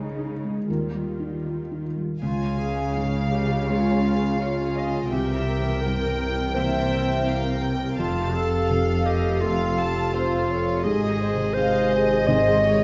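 Bittersweet and full of longing, this rubato cinematic film-score excerpt at 83 BPM opens with a felt-muted upright piano, its action noise audible in the background, beneath a dark, woody viola section and an intimate cello section bowing sul tasto. At 2.2 s two violin sections enter, one carrying a floating melody and the other a second line, joined by a soft-attacked classical clarinet, while a bright, ringing harp plays arpeggios in the background and a rich double bass section deepens the low end. A wet recital-hall reverb gives the orchestra a spacious bloom.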